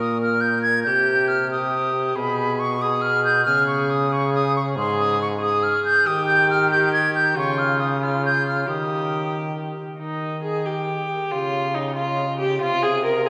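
Stately and festive, this renaissance-style consort dance in a straight 6/8 unfolds as a short passage cut from a longer classical piece. A concert flute carries the melody with a pure tone, gentle vibrato and soft attacks, reaching high into its upper register with expressive phrasing. Beneath it, a single bowed viola plays a second line with a reedy, gut-string character and period-style playing, sitting up front in the mix. A trombone anchors the bass with a bright, classical-style sound touched by light vibrato. All three play throughout, and the harmony turns toward a new section at 10.0 s. A lush church reverb lets the consort ring out in the resonant space of a church or concert hall.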